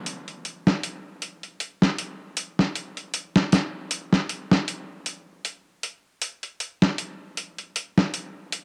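Dark and melancholic, this short trip hop fragment is cut from a longer piece and moves at an unhurried 78 BPM in 4/4, with a light swing on the sixteenths. The only part is a boom bap sampler-style drum kit of hi-hat and snare, playing from 0.1 to 8.6 seconds. Its sound is gritty and pitched down, compressed and tape-warm, with a medium-tuned snare, and the kit sits up front in a small room ambience. A moderate spring reverb with a long tail hangs over the recording, deepening its shadowy character. The production overall is dark and warm, keeping the mood dark and melancholic.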